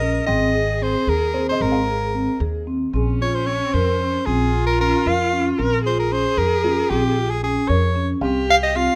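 Close, detailed microphones and light reverb give this restless, urgent piece of contemporary chamber music an intimate clarity. It moves at 227 BPM counted in eighths in a straight 5/8, in Bb dorian, and is cut from a longer work. A bright soprano saxophone carries the melody up front with light vibrato and scooped, pop-style notes, while a single bowed viola sings a smooth second line with expressive vibrato and portamento. A vibraphone played with soft mallets spins metallic, ringing arpeggios coloured by a slow motor vibrato, and a steel-strung upright bass plucks a woody, thumpy, dark foundation. In the background, a felt-muted upright piano adds a soft, mellow texture with short sustain and audible action noise, resting between 4.6 and 6.6 seconds. The harmony shifts from Abadd9 to Bbmadd9 and closes on C5.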